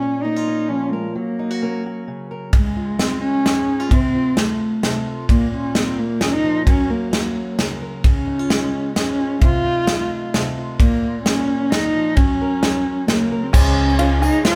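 A dark, woody bowed cello carries the melody from the opening, played close and up front with vibrato, over a fingerpicked acoustic archtop guitar whose accompaniment lets a little finger squeak through. This short indie folk passage in Db major moves at 131 BPM in a straight 3/4, with an anthemic yet nostalgic mood and a cycle of chords that leans on Bbm, Gb and Db. At 2.5 seconds a natural country drum kit joins up front, its punchy kick, medium-tuned snare, ride and crash cymbals sounding airy and polished. At 13.5 seconds the arrangement builds further as a boxy, shimmering twelve-string guitar, a plunky, twangy open-back banjo playing arpeggios in the background, a thumpy gut-string upright bass plucked on a low Db, and a jingly tambourine all arrive together. The band sounds as if playing live in one room, lightly touched with reverb.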